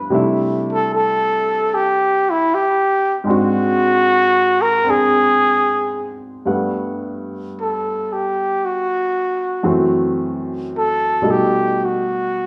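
A relaxed swing in 4/4 at 76 BPM carries this intimate, late-night jazz fragment in G major, where a woody upright piano with short sustain comps chords such as C6, Gmaj9 and B7b13 while a mellow, breathy trumpet enters at 0.7 s with soft attacks, scooped notes and light vibrato, then takes a whispered solo from 6.5 s, both up front and played live in one room with a generous, lush studio reverb.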